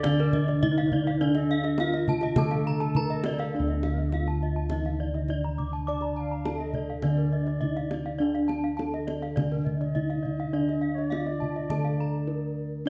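This excerpt from a longer Balinese gamelan piece opens with the full ensemble at once, brilliant and shimmering in a steady, straight 4/4. A mellow bronze metallophone played with padded disc mallets carries the melody, its paired tuning producing soft, beating shimmer. Beneath it, round bossed gongs sit up front as the bass, while a lower metallophone struck with a wooden mallet supplies accompaniment in the background. Two higher metallophones played with horn mallets spin arpeggios: one warm and boxy, the other bright and mid-forward. A pure, reedy bamboo bansuri with a straight, tongued tone traces a second line, and a tight kendang adds acoustic percussion. The arpeggios and kendang drop out around 12.0 seconds for a brief break. The bansuri lingers a moment longer, and the melody, accompaniment and gongs ring through a moderate stage reverb in a dark production until 12.9 seconds.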